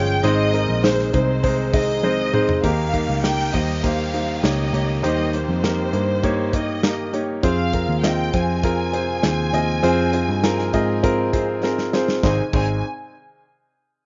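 A clear, woody upright piano opens this uplifting piano-driven pop piece in Ab major at 100 BPM, joined from the start by a lush violin section carrying the melody with vibrato, a very quiet dark string section holding sustained chords, and a round, foam-muted electric bass; both piano and violins carry a slapback echo. A polished studio drum kit with bright cymbals and a punchy kick enters at 0.2 seconds and adds a couple of fills, while an electronic downlifter sits in the background from 2.6 to 7.4 seconds. The harmony moves from Ab through Eb and Fm back to Ab, in a dry mix whose highs stop around 7.5 kHz.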